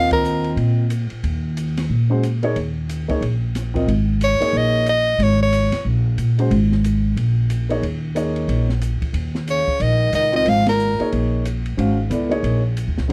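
A bright soprano saxophone with light vibrato carries the melody up front in short bursts, and a raspy, growling trombone joins it in the background from 9.5 to 11.1 seconds on this intense, hypnotic modal jazz clip cut from a longer piece. Underneath, a dark, mellow baby grand piano with long sustain and a woody pizzicato upright bass hold an Eb7sus4 chord at a brisk 182 BPM in swung 4/4. An acoustic drum kit with dark cymbals, a high-tuned snare and a boomy kick sits low in the mix, and the band hits accents at 0.1 and 10.6 seconds in a dry, close 1970s-style studio sound.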